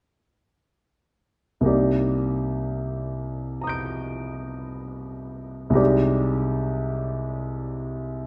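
Impressionist classical solo piano in a hazy, mysterious 9/8 with free rubato, the bright grand sitting up front with a brilliant, natural tone across a span from deep bass to high treble, its Cm9 harmony shifting at 5.8 seconds to an Abmaj7#11 over C, all bathed in the moderate bloom of a scoring-stage reverb in this brief excerpt from a longer piece.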